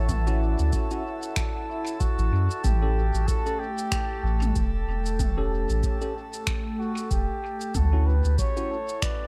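Ambient dub with a hazy, peaceful mood and a gentle swing, cut from a longer piece: a veiled, bucket-muted trumpet sings a distant, roomy solo melody with light vibrato and dub echo, over a dark, detuned sawtooth pad with chorus and built-in reverb and a drifting glass-harmonics texture of glassy overtones. Beneath them, a round, up-front sine sub bass plays until 8.4 seconds, while a deep, tape-warm analog kick with studio reverb pairs with an overdriven organic electronic kit of finger snaps, shaker and toms soaked in dub echo. A clean tine electric piano adds echoing stabs as the harmony moves from a rootless Dmaj9 to A7 and back, in a fairly dry overall sound.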